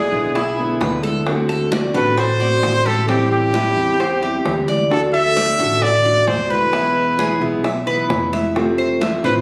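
A straight 132 BPM 4/4 groove of ringing, distant congas and round, low-tuned bongos sits in the background of this danceable, warm Cuban son and guajira, where a clear, close-miked trumpet with light vibrato carries the melody up front over bright, metallic tres arpeggios, a dark fingerpicked steel-string guitar, a very quiet, full-bodied nylon-string second line and a woody, thumpy pizzicato upright bass, moving from E7 through D7, Am7, D and E to Fmaj7 with a drum fill at 8.3 seconds, captured on a phone in the room with light reverb.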